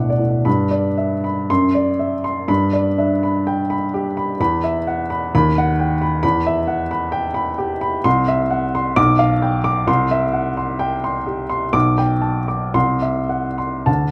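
Closely miked in a moderate recital-hall reverb, this hopeful romantic character piece, cut from a longer work, features a solo upright piano with a woody, vintage tone, long sustain and audible action noise, played up front in a flexible rubato across a span from B1 to D6.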